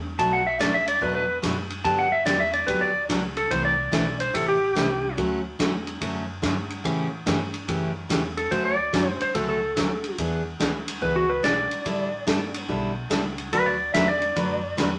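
Cheerful and down-home, this swinging western swing excerpt in D major moves at 144 BPM, with an electric slide guitar solo running throughout, a twangy lap steel played with fingerpicks adding a second line from 0.2 to 5.2 seconds and again from 8.4 seconds, a bright, full-bodied picked acoustic guitar with audible finger squeak, a big-band drum kit with a punchy kick and ride cymbal in a natural big room, and a dark, woody pizzicato upright bass underneath, all set in a wet studio reverb.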